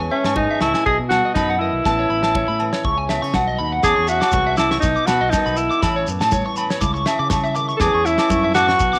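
A danceable, lightly swung groove from a damped 70s drum kit with fat snare and tight kick, joined by medium-tuned congas, ringing agogo bells and, from 3.8 seconds, a grainy shekere, carries this joyful highlife guitar band excerpt, where a clear, up-front alto saxophone sings the melody over a round fingered electric bass, a slightly broken-up electric guitar playing arpeggios with analog chorus and slapback echo, and a woody fingerpicked steel-string acoustic guitar in the background, all set in a moderate echo chamber reverb.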